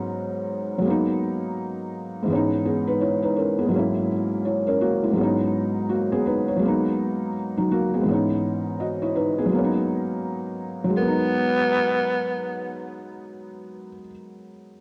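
A slow hip hop groove at 83 BPM in 4/4 swings its sixteenths, with the harmony in G# minor moving through chords such as B69, G#m7, C#m7 and F#9 over a G# bass. A felt-muted upright piano carries the accompaniment throughout, its thick-felt tone soft, dark and intimate, placed up front and rounded off by a low-pass filter. At 11.0 s a growling tenor saxophone enters for a short jazz-style solo on B3, breathy and raspy with subtone, vibrato and scooped notes, close-miked and treated with low-pass filtering and analog delay before it drops out at 13.1 s. A wet spring reverb and cassette tape colouring give the recording a hazy, melancholic atmosphere. Cut from a longer piece, the clip ends as the piano stops at 14.8 s.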